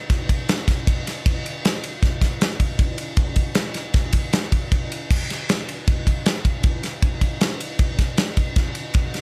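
Bright and wistful, this short rock excerpt in 5/4 with a straight feel features a lone modern studio drum kit, playing from 0.1 seconds through 9.2 seconds on crash, kick, snare and ride. The acoustic kit sits up front with an airy, polished studio-room sound, pairing a medium-tuned snare with a tight kick, all set in light reverb.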